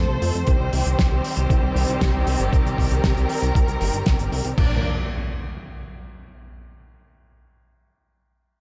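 A dark, lightly reverberant production carries this playful, sunny italo disco excerpt at 117 BPM, where lush, bowed symphonic strings hold sustained chords with vibrato and portamento over a glossy, chorused pulse-wave synth bass from the start, a gritty, thumpy electronic kick and a dry, fat-snared 70s drum kit with crash and hi-hat drive the Cm passage until 4.7 seconds, and an up-front electronic impact lands on Bb at 4.6 seconds.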